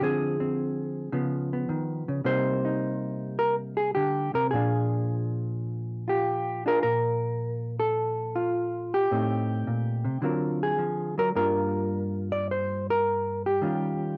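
A cassette home recording in a small room with moderate reverb carries this relaxed, swinging solo jazz excerpt at 106 BPM in 4/4 with a rubato feel, where an up-front, dark, clean hollow-body electric guitar, fingered, moves through chords such as Dm7b5, Cm7 and Bb7 before settling into Bb major at 6.8 s and passing through Am7b5, D7alt and Gm7 to close on Eb9 at 13.6 s.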